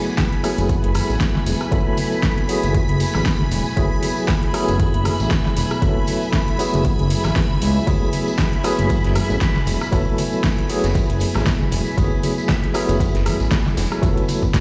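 Set in a bare stone room with light reverb, this deep, warm deep house excerpt rides a punchy, overdriven electronic kick and a fat-snared kit with metallic hats, while a worn, slightly out-of-tune tine electric piano plays up-front stabs over a single minor eleventh chord, its gritty sampler tone pumping under tremolo, delay and a filter sweep, as a smooth, wave-folded gliding synth bass and dark, sul tasto chamber strings also pump, a shimmering string-machine violin sustains high above, soft-handed congas and a jingly tambourine sit in the background, and a very quiet, saturated, oversized low-tuned kit joins at 7.9 seconds.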